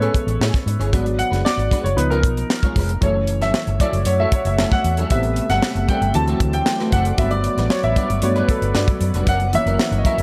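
Nocturnal and urban, this polished 1980s jazz-funk pop excerpt moves at 115 BPM in a straight 4/4, with an intimate, up-front grand piano carrying a solo through analog chorus over changes running from Amaj7 through F#m7 and D7 to Gmaj7 and F#7. A tight, dry funk kit with a high-tuned snare, a dark, foam-muted fingered bass with a round, punchy tone, and a slightly broken-up, compressed electric guitar riff under ensemble chorus hold the groove. At 3.7 seconds a lush, detuned sawtooth pad with a slow attack swells in behind them, all set in light reverb.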